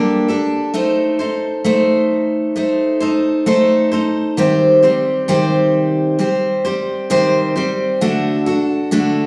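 A lone picked steel-string acoustic guitar opens this brief pop fragment, its bright, full-bodied dreadnought tone sitting up front. The mood is heartbroken and emotional, moving at a slow 66 BPM in a straight 4/4 feel, with the instrument tuned to A4 = 441 Hz. The guitar ranges from C3 to C5, drifting from Gmadd9 through Adim and settling on Cm at 4.4 seconds before reaching D at 8.0 seconds. A wet recital hall reverb with a 1.8-second decay surrounds the playing, giving it the resonant air of a church or concert hall. Cut from a longer piece, the passage lasts just over nine seconds and feels like an unresolved moment of grief.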